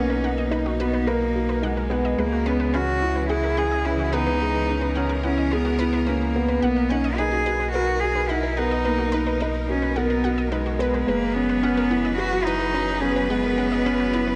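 From the first moment, a bowed solo cello carries the melody up front, its sul tasto tone intimate and touched with light vibrato, while a felt-muted upright piano repeats a soft, dark riff beneath it. A clear studio string section holds sustained chords, a deep, round sub bass anchors the low end, and a bright, detuned unison pluck traces arpeggios in the background. The cello, piano and pluck each carry a delay, and light reverb gives the recording a small-room closeness. This hopeful, luminous piece of piano-and-strings electronica moves at a steady, straight pulse in four, its harmony shifting from Bmaj7 to C#m7, back to Bmaj7 and on to F#9sus4. Every part plays through the full 14.4 seconds of this passage cut from a longer piece, keeping the texture full from start to finish.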